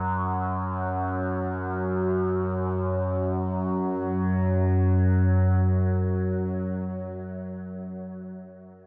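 Ambient in free time, this brief excerpt from a longer piece feels vast and ominous, carried by a single overtone-sweeping drone that sits up front and spans F#2 to F#3 over its full 7.0 seconds. Its wave-folded, resonant tone blends sawtooth, sine and triangle shapes, with moving overtones and a moving notch, a slow attack and a long release, treated with chorus, built-in reverb and diffuse ambient delay. A huge ambient reverb with an 8.9-second tail surrounds it within a dark, warm production, and the piece shifts into a second section at 2.7 seconds.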